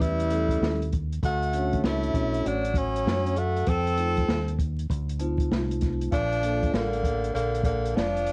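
A swung 98 BPM jazz-hop groove in 4/4 carries this cool, warm excerpt, where a breathy, up-front tenor saxophone sings the melody with vibrato, subtone and scooped notes over a distant, roomy second tenor line, a mellow soft-mallet vibraphone that drops out at 6.8 seconds, a round, punchy dub bass and a dark open jazz kit with a boomy kick and 12-bit sampler grit, all wrapped in cassette tape warmth, vinyl crackle and light reverb as the chords move from A9 through Dmaj7 and F7 to Bbmaj7.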